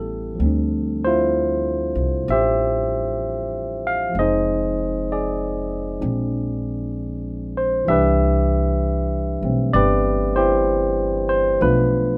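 From the first moment, a barky tine electric piano and an upright bass sound together in this late-night, intimate jazz ballad, cut from a longer piece. The tempo is a slow 64 BPM in 4/4 with a gentle swing on the eighth notes, centred in C major and tuned slightly high to A4 = 444 Hz. The electric piano carries the accompaniment up front, its lightly overdriven tone pushed through a combo amp and giving the chords a gritty bite as they move from Dm11 through Fm7, Bb9 and Cmaj9 before turning to Bm7b5 near 11.6 seconds. Beneath it, the acoustic upright bass is plucked on steel strings, sitting lower in the mix with a woody, growly voice in its deep register. A light reverb lends both instruments a subtle sense of space, and they play together through to the end at 12.2 seconds.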